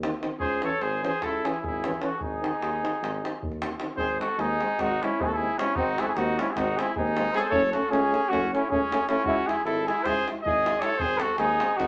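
In a moderate studio room, this fiery, bittersweet Balkan brass band excerpt in 9/8, pushing ahead from 307 BPM in eighths, opens with two classical-style euphoniums, a soft-attacked, smooth-topped tuba with light vibrato and a tight davul, before a clear, up-front flugelhorn takes the melody at 0.4 s over a trumpet second line and the piece moves into a new section at 4.0 s, cycling through C#m, G# and F#m in G# phrygian dominant.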